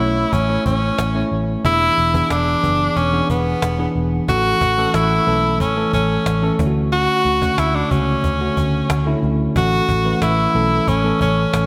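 A straight 4/4 pulse at 91 BPM carries this uplifting, nostalgic 1980s-style pop excerpt in A major, moving from A through E7 and Dmaj7 back to A. A bright, up-front tenor saxophone sings the solo melody with pop vibrato and digital delay over a worn, slightly out-of-tune tine electric piano, lightly overdriven through its built-in speakers, while a dark, round, foam-muted fingered electric bass punches beneath. A snappy cajon played with soft hands sits in the background, and the whole is bathed in a lush plate reverb with glossy digital-era production.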